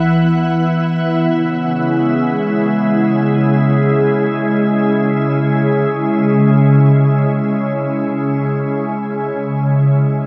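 A soft, pure, organ-like pad with ensemble chorus holds sustained chords up front from the start, accompanied until 1.2 seconds by a very quiet, deep, round sub bass, before the pad moves from Esus2/C# to C#m and carries on alone in this melancholic, reflective ambient excerpt in free time and C# minor, bathed in a huge, wet reverb.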